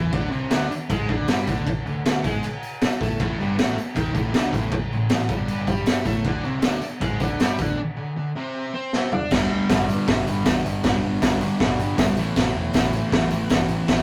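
A double-tracked fuzz guitar leads this swaggering, rowdy garage rock excerpt at 157 BPM, riffing up front over a gritty, up-front drum kit with a high-tuned snare and boomy kick. Growling picked bass with overdrive sits in the background alongside a jingly tambourine, while the chords move from D5 through Gsus2 and Csus2 before a break at 7.8 seconds and a drum fill at 8.9 seconds launch a new section on G5 at 9.3 seconds, moving to A5 at 12.2 seconds. The sound is that of a rough rehearsal room, with tube saturation and moderate reverb.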